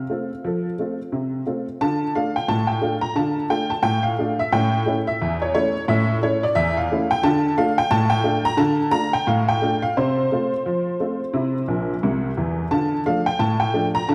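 Bathed in a wet concert-hall reverb, this brief, playful ragtime fragment features a solo honky-tonk upright piano, detuned, jangly and woody, sitting up front in swung 2/4 as it moves from F through Dm and A before a jaunty fill at 11.7 seconds.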